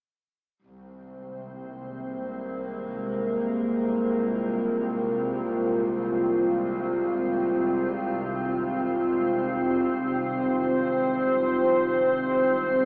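In this melancholic, spacious ambient excerpt in free time, tuned to A4 = 438 Hz, a clear, biting symphonic double bass section bows a close, intense low C with light vibrato from 0.6 s, joined at 0.9 s by a calm, organ-like sine drone with ensemble chorus and at 2.2 s by an up-front, mellow wavetable pad of detuned, morphing triangle and sine tones sustaining a Bb7sus4/C chord with chorus, all bathed in a huge, wet reverb and filtered through an AM-radio sound.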